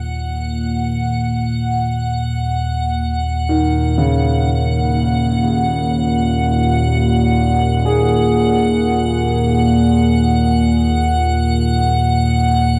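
Dark ambient drone in free time, vast and ominous, where a warbling analog drone sits up front with chorus beneath a faint icy, crystalline glass pad, and a dark, boxy concert grand piano enters at 3.5 seconds with tape-echoed arpeggios, all suspended in a huge wet reverb.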